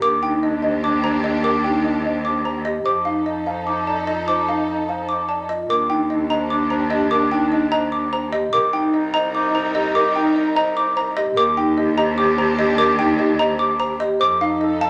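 The recording sits in a large studio with a wet reverb, giving this cut from a longer classical piece a roomy glow around its close, detailed parts. It is minimalist pattern music in 7/8 at 296 BPM counted in eighths, with a straight, hypnotic and urgent feel that circles through Ebmaj7, F7 and Cm7. Up front, a xylophone with soft rubber mallets spins airy, percussive arpeggios high above, while a mellow vibraphone with soft mallets rings out its own arpeggios with a medium motor vibrato. Further back, a buzzing marimba with medium mallets carries the woody melody, and a dark clarinet plays a soft-attacked second line. A lush symphonic string section holds bowed chords, and a single focused cello anchors the low end with a clear bass line, all six parts sounding together from 0.0 to 14.9 seconds.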